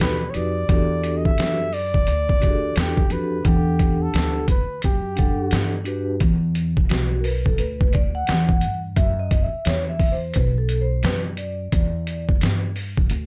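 An up-front, sampler-style drum kit anchors this nocturnal, smoky jazz-hop cut, its pitched-down, muffled hits carrying a thumpy kick, a medium-tuned snare and hi-hat, overdriven and compressed as if re-recorded in a small room. Beneath it, a pizzicato upright bass with steel strings adds a woody low end, while a vibraphone played with medium mallets rings out metallic chords colored by slow motor vibrato. A mellow flugelhorn carries the melody in a jazz style with a soft attack, then drops out at 5.8 seconds. From 6.2 seconds the vibraphone takes a solo, holding it until 12.4 seconds, while the bass and drums carry on to the end of the fragment. The harmony moves through extended minor and suspended chords over a swung sixteenth-note feel, and the dry, dark production keeps the sound close.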